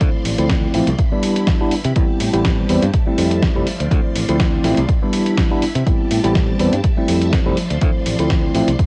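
A worn, slightly out-of-tune tine electric piano sits up front in this short cut from a longer filtered disco house piece, its clean chords passed through phaser, sidechain pumping and cassette tape coloring as they move through Dm7, a rootless Cmaj7, Am7 and Fmaj7. The groove runs at 123 BPM in 4/4 with a gentle 16th-note swing, giving a sensual, funky mood that holds from 0.0 to 8.9 seconds. A punchy analog electronic kick anchors the low end, while a dusty, sampler-style kit adds gritty hi-hats and a medium-tuned snare, compressed and re-recorded in a large room, with sidechain pumping on the hats. A bright, growly fingered electric bass plays directly underneath, also ducking with sidechain pumping. In the background, a lush sawtooth string machine holds soft-attack sustained chords with a sub octave, shimmering through ensemble chorus, phaser and 12-bit sampler grit. The whole track carries light reverb and the hazy character of a home cassette recording.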